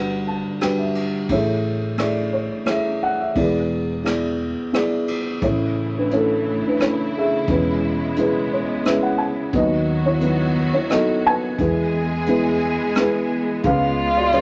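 A felt-muted upright piano carries the melody in this hopeful, intimate acoustic folk-pop ballad in A major, its mellow, boxy tone sitting up front and adding soft fills at the start and again at 8.2 seconds over a pizzicato upright bass with a woody tone and a vintage brush kit with dark cymbals and a punchy kick, moving in a gentle 3/4 at 87 BPM. At 5.4 seconds a lush symphonic string section enters with rich, bowed sustained chords, and at 13.7 seconds a single dark violin slips in with expressive vibrato and portamento, all under a light reverb in what is cut from a longer piece.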